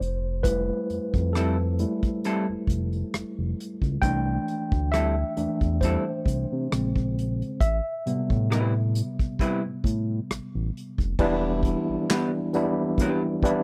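A lightly swung sixteenth-note groove in 4/4 sets a slow, soulful neo-soul and R&B mood, carried by an acoustic drum kit played with bundle sticks: a tight kick, medium-tuned snare, rim clicks, handclaps, hi-hat, and dark crash cymbals heard in a small room. Underneath, a smooth synth bass blends sawtooth and square waves with a touch of ring modulation, giving sustained, dusky low notes with a fast attack. A worn tine electric piano, slightly out of tune and lightly overdriven as if through its built-in speakers, takes a featured solo over the band from the start until 11.2 seconds, moving through Fmaj9, C6, A#m9 and Am9. A clean, picked hollow-body jazz guitar with a shadowy tone joins at 1.4 seconds with a second line in its middle register, and the harmony settles onto Em7 at 11.2 seconds for a brief closing passage. Every part sits up front in a dry, close recording with a 1970s studio character, and the clip is cut from a longer piece.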